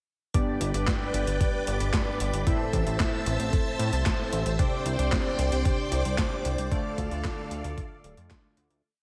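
Bittersweet yet danceable, this short italo disco piece rides a straight four-on-the-floor pulse from 0.3 seconds. A lush, vintage string machine ensemble holds bright sustained chords with a soft attack and long release, colored by phaser and ensemble chorus. A glossy chorused polysynth plays held chords with syncopated pushes, its tone shaped by a filter sweep. From 0.6 seconds, an up-front synth bass built from pulse and sawtooth waves gallops in sixteenth notes beneath the progression of G, Am, Csus2 and Dm. The drums pair a thumpy, overdriven electronic kick with a gritty, dusty soul sampler-style kit of closed hi-hat, handclaps and a medium-tuned snare, the kit treated with gated reverb, all set in a light reverb before the music fades out from 6.0 seconds.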